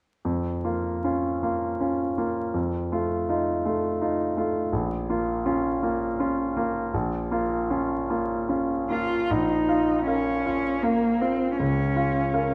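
Through dark vinyl crackle and a moderate stage reverb, this elegiac, melancholic romantic classical fragment in a rubato 3/4 opens with a polished concert grand piano alone, its clear tone grounded by deep bass, before a single bowed cello enters at 8.9 seconds with a rich, smooth vibrato melody that carries on until the cut at 12.5 seconds.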